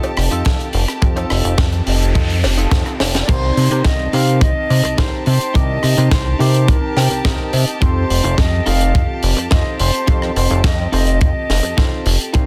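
This nu-disco excerpt opens on a worn, slightly out-of-tune tine electric piano coloured by phaser and tape echo, with a filter sweep running across it while a clear, biting violin section holds sustained chords under sidechain pumping and 12-bit sampler grit. A twangy, direct-recorded clean guitar riff sits in the background with subtle chorus and tape echo, and a tight funk kit with a high-tuned snare, rim click, hi-hat and crash plays alongside a dry cowbell from the start. A glossy, nasal chorused synth bass enters up front at 0.2 seconds, joined by a tight, mid-forward kick, and an electronic noise sweep runs behind them before a drum fill at 3.0 seconds. The groove then drops into its main section over Cm7, where a pure, straight-toned concert flute carries the tongued melody through a digital delay. The guitar adds a fill before the harmony returns to F7, keeping the sleek, groovy feel tight and dense in a small room.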